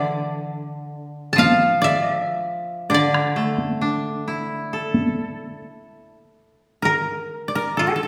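A free, rubato pulse in 4/4 drifts between 61 and 69 BPM in this still, meditative fragment of Japanese traditional chamber music, set in D hirajoshi. Three fingerpicked kotos with a woody, dry attack carry it: a mellow lead melody sits up front with a softer second line beneath it, while a bright, forward accompaniment in the low register rings until 6.6 seconds. Solo taiko drums struck with heavy sticks sound close between 1.4 and 5.2 seconds, and the whole ensemble blooms in the reverb of a recital hall.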